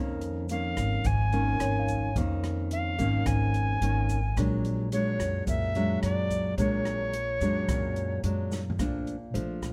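A dark, warm production with light reverb frames this sunny, romantic bossa nova fragment at 108 BPM in a straight 4/4, tuned slightly low to A4 = 438 Hz. A bright, fingerpicked classical nylon-string guitar sits up front beside a woody pizzicato upright bass, while an airy, polished jazz kit in a small room, with a boomy kick, rim click and toms, and a grainy egg shaker tucked in the background carry the groove over Db69 and Bb7alt. From 0.5 seconds a pure, mellow alto recorder sings the expressive, vibrato-tinged melody up front, a worn, slightly out-of-tune tine electric piano murmurs very quietly from 1.6 seconds, and a drum fill at 8.5 seconds leads to a closing Bbmaj7.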